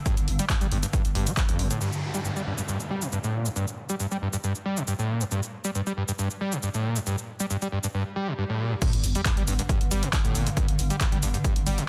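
A squelchy, resonant sawtooth acid line screams up front through distortion, analog chorus and digital delay, running throughout this intense, relentless excerpt of driving peak-time techno at 137 BPM in G minor. A punchy, tape-warm electronic kick and a growling, buzzy 808-style bass, overdriven and pumping with sidechain, drive the opening alongside a swarming, detuned granular drone in the background, then drop away at 1.8 seconds, leaving the analog drum machine's hi-hat, shaker, handclaps and crash under the acid line while a downlifter and sub drop murmur behind. A swell builds into the drop at 8.8 seconds, where kick, bass and drone return with an impact for a dense, heavily limited finish.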